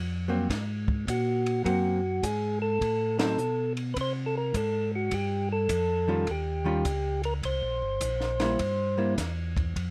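Soul jazz organ trio at 104 BPM in 4/4 with a swung eighth feel, greasy and swinging, cut from a longer piece and moving through Ab9, Am, Eb9 and C7 with a band accent at 3.1 seconds. A mellow tonewheel organ with key click and a slow rotary speaker carries the bass from the very start, while a hollow-body archtop guitar, miked and amplified, adds clean, picked accompaniment. A compact cocktail kit in a small room plays hi-hat, kick, ride and snare with dark cymbals, a high-tuned snare and a punchy kick, and from 1.1 seconds a percussive tonewheel organ with third harmonic percussion and a round, rotary-voiced tone sits up front with the melody, framed by light reverb and close, detailed microphones.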